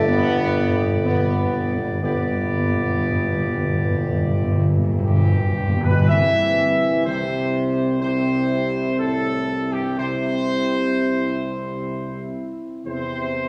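Classical brass excerpt, solemn and triumphant, moving at a stately 62 BPM in 4/4 with a straight feel in C major. The trumpet section carries the melody, its warm, distant tone sitting up front with a roomy quality. Beneath it, a mellow French horn section with a soft attack and a clear trombone section with light vibrato, placed in the background, hold sustained chords. A roomy tuba with a soft attack anchors the bass. Close, dry timpani struck with medium mallets play a fill during the opening 6.1 seconds over a G chord and stop at 7.5 seconds, while the harmony settles on C from 6.1 seconds. The whole ensemble sits in a wet scoring-stage reverb with a decay of 1.6 seconds, lending the brass a grand, resonant space.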